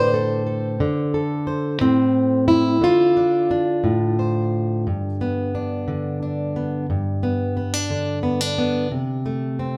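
A dark, full-bodied jumbo steel-string acoustic guitar, plugged in, fingerpicked and up front, carries this short pastoral, nostalgic folk excerpt alone at 59 BPM in a straight 6/8 in G major, moving from Dm7 to G at 4.9 seconds and settling on C5 at 8.9 seconds, all bathed in the wet reverb of a stone room captured live.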